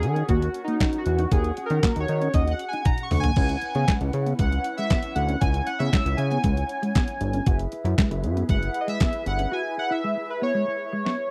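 A detuned 8-bit digital drum machine stands out at the front, its thumpy kick, medium-tuned snare, handclaps, hi-hat, toms and crash carrying a tape-warm, sampler-style punch, with a fill around 2.9 seconds and another at 11.1 seconds. This is danceable early-eighties boogie funk in a straight four, cut from a longer piece, moving through D#m7, C#m7 and F#9sus4. A fat, thick analog bass with a sawtooth bite and filter pluck sits up front until 9.5 seconds, while a glossy, chorused polysynth with pulse-width modulation and filter sweeps takes a retro solo across the whole passage. A mellow electric guitar plays a clean, fingered riff through analog chorus, and a breathy large flute ensemble holds close-miked sustained chords with vibrato underneath. The sound is a dry, close 1970s-style studio recording with a touch of digital ambience, giving the groove a funky, intimate feel.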